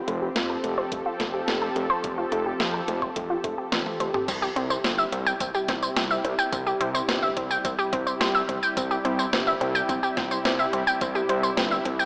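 An uplifting, dreamy synthwave excerpt at 107 BPM in C major opens on a lush, detuned unison pad holding sustained chords with chorus, 12-bit sampler grit and sidechain pumping, alongside an up-front, round and nasal analog pluck spinning arpeggios through chorus and tape echo. A fat, sawtooth analog bass with a filter sweep sits beneath, while a clean 12-bit drum machine with an overdriven, medium-tuned snare, hi-hat, tambourine, toms and crash stands forward, and a layered, knocking electronic kick joins at 0.9 seconds in the background. A drum fill at 3.7 seconds leads the harmony from Fadd9 to C at 4.3 seconds, all bathed in a lush hall reverb with a lo-fi AM radio tint.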